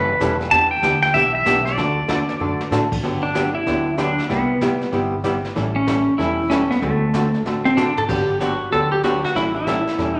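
A brisk swing at 190 BPM in 4/4 drives this playful western swing excerpt in G major, with a bouncy shuffle to the eighth notes. The pedal steel guitar carries the melody up front, its bright, twangy, compressed tone picked with fingerpicks and shaped by slide and volume swells. Beneath it, the miked archtop guitar plays picked accompaniment with a dark, hollow-body sound, sitting close in the mix. The upright bass adds a woody, growly pizzicato low end, and the brushed drum kit joins at 0.2 s with a smooth, shadowy feel, subdued cymbals and a boomy kick, dropping in short fills along the way. A generous large-studio reverb surrounds the band, and the music moves into a new section at 3.0 s as the chords travel through Gmaj7, Cmaj7, A7 and D7.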